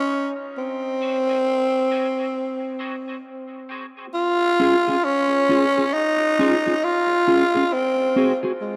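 Bathed in a moderate spring reverb, this heavy, hypnotic reggae piece at 67 BPM, swung on the sixteenths, puts a raspy, growling tenor saxophone up front with light vibrato and dub echo, carrying the melody from the opening through a brief chordless break and then over Ab7 and Dbadd9 chords, while a dark, clean, fingered electric guitar, thinned by a high-pass filter and colored by analog chorus and its own dub echo, joins in accompaniment at 1.0 s and falls away at 8.5 s.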